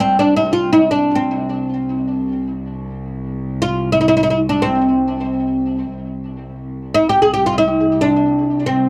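Stately and warm, this fragment of an Arabic maqam ensemble piece places a bright, woody, fretless oud up front, its plectrum-plucked double strings touched by tape echo, over a lush, intimate bowed cello section holding a low drone with vibrato and a soft sul tasto attack for the full 8.9 seconds, in a dry, close 1970s-style studio sound with light reverb.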